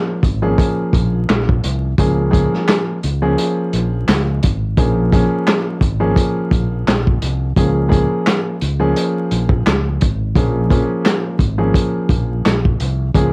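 Soulful and warm, this boom-bap hip-hop excerpt moves at 86 BPM in 4/4 with a swung sixteenth-note feel, cut from a longer piece. A dark baby grand piano opens alone at 0.0 seconds, intimate and short in sustain, its action noise audible beneath a cassette-tape haze as it voices chords that alternate between Bbm7 and Db6. At 0.2 seconds a fingered electric bass joins in the low register, warm with transformer saturation, alongside a vintage acoustic drum kit of kick, snare, hi-hat and handclaps. The kit sounds muffled and lo-fi, as if tracked in a small room, with a tight kick, a medium-tuned snare and a rolled-off top end. The drums, bass and piano all sit up front in a dry mix with little reverb, and vinyl crackle adds its grain to the whole home-recorded cassette sound.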